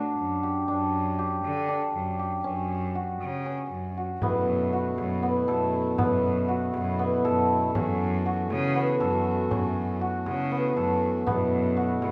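Hypnotic and pensive, this brief passage of contemporary chamber music moves in a straight 7/8 at 238 BPM, opening with shimmering, hammered cimbalom arpeggios over an earthy, biting bowed cello bass line, both up front, before a reedy, breathing harmonium enters with sustained chords and a small, bright frame drum played very quietly with soft hands joins at 4.2 seconds, all set in a moderate recital hall reverb.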